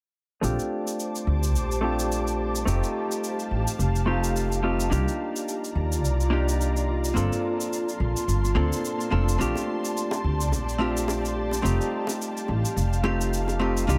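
A small, lightly reverberant room frames this relaxed sunset chillout clip in Bb major at 107 BPM, with a gentle sixteenth-note swing. Up front, a dark, clean hollow-body jazz guitar accompanies through Bbmaj13, F9, Cm11 and Gm11 chords with a filter sweep and delay, beside a woody, growly pizzicato upright bass. A layered electronic shaker sits low in the mix, an ethereal, detuned pad with slow attack, chorus and tremolo enters at 0.8 seconds, and tight, high-tuned, saturated bongos join in the background from 9.6 to 13.6 seconds.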